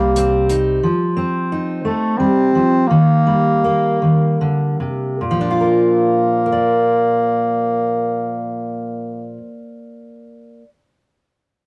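A rough rehearsal-room recording with light reverb captures a hopeful indie folk passage in 6/8 and Bb major at a slow 48-60 BPM, where a full-bodied, fingerpicked jumbo acoustic guitar with fresh strings sits up front beside a distant, roomy bass clarinet playing a classical-style solo melody, while a woody pizzicato upright bass and a dry, dark hi-hat sound only within the first 0.8 seconds before the tempo slows until 5.2 seconds as the harmony moves from Cm through F7 and Eb to Bb.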